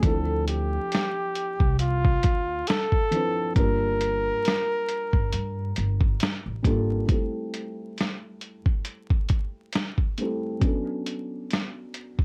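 Vinyl crackle and light reverb frame this hazy, reflective lo-fi hip hop excerpt, where a breathy, up-front flugelhorn carries a jazz-style solo melody with light vibrato until 6.2 seconds. Underneath, a felt-muted upright piano with a boxy, intimate tone, cassette-tape colour and a low-pass filter plays throughout. A woody pizzicato upright bass holds the low end until 7.0 seconds, while a compressed sampler-style drum kit with a thumpy kick, a muffled character and a small-room sound plays hi-hat, kick and snare to the end. From 7.1 seconds a filter sweep moves across the piano as the chords shift.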